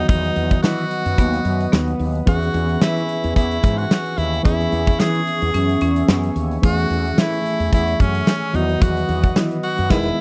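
This 1980s-style pop excerpt in E major has a glossy, nostalgic mood and moves at 110 BPM in 4/4 with a light sixteenth-note swing. An edgy, forceful tenor saxophone carries the solo melody with pop-style vibrato and a slapback echo. A worn, slightly out-of-tune tine electric piano plays the accompaniment, lightly overdriven through its built-in speakers. Behind it, a dark, shimmering pulse-width pad holds soft-attack sustained chords, while a fretless electric bass adds a direct, chorused low line. A punchy big rock drum kit sits up front in a bright stone room, with crash, hi-hat, snare and tambourine, and a woody, hard-mallet marimba adds brief second-line figures from 1.2 s. The harmony moves through B/E, E6 and Amaj7/E, and the recording has the dry, close sound of a 1970s-style studio with light reverb, closing on a band accent at 9.9 s.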